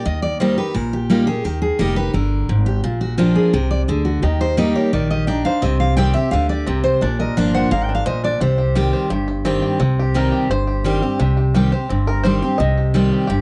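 Two picked dreadnought guitars open this driving, haunting bluegrass excerpt in C minor at 172 BPM: one carries a full-bodied melody with audible finger squeak, the other picks a bright accompaniment, while a woody, thumpy gut-string upright bass plays pizzicato up front over chords moving through Eb, Bb and Cm. A twangy, percussive fingerpicked banjo joins the melody at 4.2 seconds. The lead guitar drops out at 8.7 seconds, and the five-string banjo takes a solo from 9.8 seconds. The dry, close 1970s-style studio sound carries only a small room reverb.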